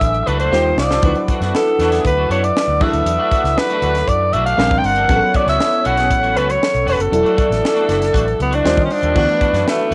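A light room ambience and the soft haze of home cassette tape frame this short, glossy cut from a polished 1980s jazz-funk pop piece, breezy and straight in 4/4. Up front, a raspy, growling alto saxophone carries the melody with vibrato, while a mellow horn section sits in the background on a second line, with a smooth top and octave doubling. A glassy FM electric piano with bell-like attack and lush chorus plays the accompaniment, and a clean, picked electric guitar with analog chorus works a riff alongside it. A very quiet pulse-width pad adds shimmering sustained chords high above, and a dark, foam-muted fingered electric bass gives a round, punchy low end. The airy fusion drum kit, with high-tuned snare and punchy kick, plays a fill from 0.5 to 1.0 seconds as the harmony moves through suspended and sixth-ninth chords such as E9sus4, D#69 and D69.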